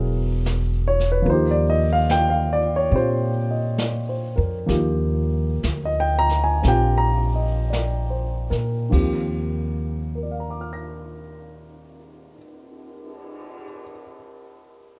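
An up-front, dark baby grand piano with audible action noise and a plate reverb provides the accompaniment in this intimate, late-night jazz ballad in Eb major, swinging gently in 4/4 at 48-74 BPM and slowing down from 1.3 to 8.9 seconds. A woody, thumpy pizzicato upright bass sits close beside it until 12.3 seconds, while a distant, roomy brush kit with dark cymbals and a boomy kick enters at 0.5 seconds. The light reverb and rough home-demo mix give this cut from a longer piece a casual, close-quarters feel.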